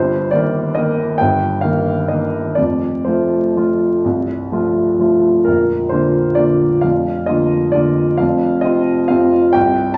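A smooth, vintage-toned grand piano plays alone and up front in this graceful, playful classical waltz fragment in 3/4 with a flexible rubato feel, moving through Eb/G, F and Bb chords across a range from Bb0 to A5, set in a wet large-studio reverb with vinyl crackle underneath.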